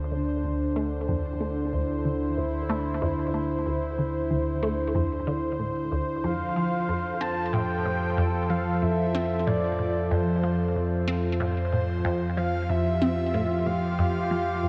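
A bright, up-front sweeping pad leads this mysterious, hypnotic stretch of ambient, sequencer-driven space music, holding detuned sawtooth chords that evolve through a slow filter swell, coated in chorus. Beneath it, an analog drone supplies the bass with a vintage, warbling pulse-width tone that fades in slowly and lingers on long releases. A juicy, squelchy blip pluck repeats a riff from the start, its snappy resonant filter and moving notch colored by phaser, subtle chorus and delay. At 6.2 seconds, as the harmony moves from Dm7 to F, a breathy, flute-like synth lead enters with a soft melody carrying vibrato, analog chorus and delay. The dreamy mix is soaked in plate reverb, and the excerpt is cut from a longer piece in a straight 4/4 feel.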